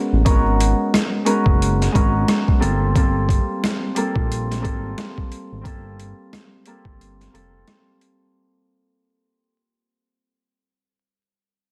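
A ringing, thumb-plucked Celtic harp opens this dark, moody boom-bap hip-hop excerpt at 89 BPM with a swung 16th feel, sitting up front and filtered as it moves from G#m11 to Gm11. A smooth, mellow synth bass with sawtooth and square-wave tones and vibrato sustains low underneath, while a gritty, pitched-down sampler-style kit, overdriven and up front, pairs a thumpy kick and high-tuned snare with hi-hat and rim click. The dense master carries light reverb and vinyl crackle, a fade runs throughout, and a break arrives at 7.0 seconds before the drums stop at 8.2 seconds and the harp rings on alone until 10.5 seconds.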